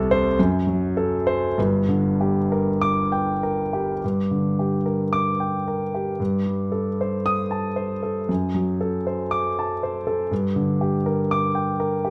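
A romantic classical character piece for solo piano in G minor, this brooding, bittersweet fragment from a longer work moves in a slow, rubato 2/4 at roughly 48-61 BPM. The concert grand sounds intimate and up front, with deep bass and long sustain caught by close, detailed microphones that let its action noise come through, and only light reverb around it. After an opening that passes from F#dim to Gm, a new section begins at 4.0 seconds, moving through Am7b5/G and D7/F# before returning to Gm at 10.3 seconds.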